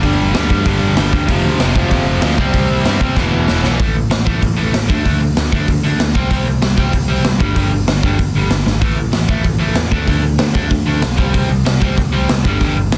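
A straight, driving 4/4 punk rock beat from a raw garage drum kit, with a punchy kick, medium-tuned snare and a saturated, gritty, rolled-off top, is set up front in a pumping stone room, with drum fills near 3.8 and 8.7 seconds. A crunchy, bright overdriven guitar riff sits up front, backed by a growly, punchy picked bass. A mellower overdriven guitar and a double-tracked distorted guitar riff in the background until 3.8 seconds, giving this urgent, aggressive cut from a longer piece a dense, heavily limited modern sound with little reverb over A5, D5, C5 and G5 chords.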